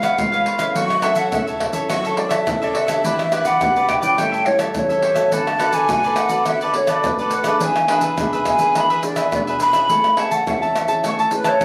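Joyful and playful, this short samba and choro excerpt sets a breathy, hollow flute carrying the melody at a distance over crisp, up-front picked cavaquinho and warm thumb-plucked nylon-string guitar, while egg shaker, pandeiro, tamborim and a tight surdo played with hard hands add a saturated, compressed drive, the whole heard as if caught on a phone in a small club room with a wet reverb as the chords move from C#7 and F#m7 through D6 and E7 to settle on Amaj7 at 9.9 seconds.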